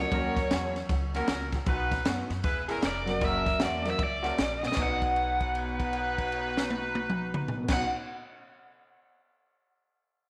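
Rollicking and swaggering, this short electric blues shuffle in B major swings along at 155 BPM as a bright, overdriven cranked stack guitar carries the up-front melody with spring reverb. A drum fill at 4.6 s on the compact cocktail kit, with its punchy kick, high-tuned snare and dark cymbals, leads into a held note from 4.8 s to 7.6 s, while a slightly broken-up, lo-fi guitar through a small old amp plays a chorused riff in the background, a clear horn section adds soft-attack stabs with light vibrato, a dark grand piano with audible action noise comps quietly, and a woody, thumpy pizzicato upright bass anchors the low end, all in a moderate echo-chamber space.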